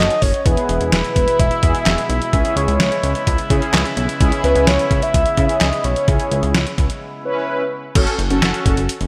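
Driving yet melancholic, this synth-pop excerpt at 128 BPM sets a soft, octave-layered synth lead with chorus and delay over dark synth brass treated with chorus and phaser, a glossy chorused synth bass, and a clear, lightly vibratoed brass ensemble holding sustained chords from 0.5 s. Up front, a thumpy, tape-tinged detuned 8-bit drum machine drives crash, handclaps, hi-hat, kick and snare, and after a break at 7.0 s the harmony moves from E and C#m7 to F#m at 8.0 s. The bright 1980s-style digital production sits in a lush hall reverb.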